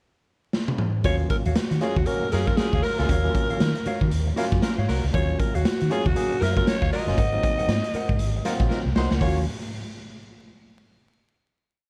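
Funk with a hypnotic, driving swung groove, built on a raw, boomy garage drum kit with ghost-note syncopation and fills at 0.5 and 8.7 seconds, a round, foam-muted fingered electric bass riff anchored on the downbeat, mellow sixteenth-note electric guitar scratching in the background, and barky, lightly overdriven tine electric piano stabs, while a breathy, raspy alto saxophone states call-phrase motifs and a horn section with light vibrato adds short stabs from 2.3 seconds, all moving from Ebm9 to Ab9 before closing on a final chord under dark, crackling vinyl-tinged small-room ambience.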